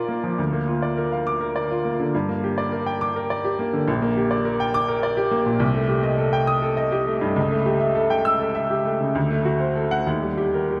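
A clear, natural, up-front baby grand piano rings through a vast, echoing cathedral space in this agitated, passionate excerpt from a virtuoso classical piano study, played solo in a rubato 6/8 across a range from Bb1 to E6, with the harmony moving from Bb/D through Gm, Am7b5/C, A7/C# and D7 before arriving on Eb at 10.1 seconds.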